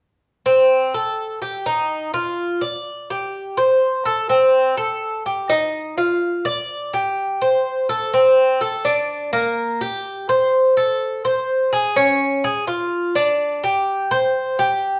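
A picked Cuban tres plays alone and up front from 0.5 s in this sunny, relaxed Latin excerpt at 125 BPM in a straight 4/4, its metallic double strings, some doubled at the octave, ringing between Bb3 and D5 through a lush large-studio reverb that gives the live, one-room take a roomy glow before a new section begins at 8.1 s and runs to the cut at 15.0 s.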